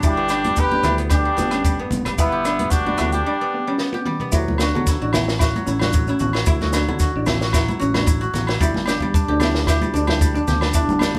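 Sunny and warm, this 112 BPM highlife guitar band excerpt in D major swings lightly as a veiled, growling cup-muted trumpet carries the melody over a brilliant second trumpet until 3.8 s, while a silvery guzheng plays ringing arpeggios, a dark, clean electric guitar accompanies, and a growly fingered bass, a dry cocktail kit with a high-tuned snare, grainy maracas, agogo bells and thin-skinned congas keep the groove through a break and a drum fill into the second section at 4.3 s.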